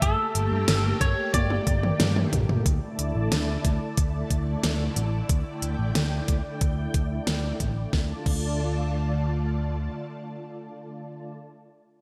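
A twangy, slightly broken-up lead guitar melody with lush chorus and digital delay opens this nostalgic, nocturnal synthwave excerpt in D minor at 91 BPM. It is shadowed by a pure, mellow FM bell in the background, and both fall away at 2.3 seconds. Meanwhile a silky sawtooth string pad with vintage 12-bit grit and sidechain pumping sustains chords over a tube-saturated picked electric bass, a thumpy electronic kick and a fat-snared, crisp-hatted pop kit in gated reverb, whose drum fill begins at 1.3 seconds. The drums drop out at 8.5 seconds, leaving pad and bass in a bright 1980s-style digital production.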